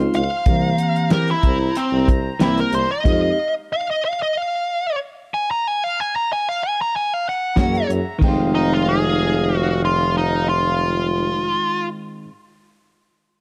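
Mournful and brooding, this straight-eighth soul blues excerpt in F minor moves at 93 BPM, with a smooth overdriven lead guitar carrying the melody throughout and playing alone from 3.6 to 7.6 seconds, while a mellow phased tine electric piano, a clear background horn section holding chords, clean chorused guitar stabs, a scooped, roomy tuba bass and a dry, fat-snared drum kit return at 7.6 seconds beneath light reverb.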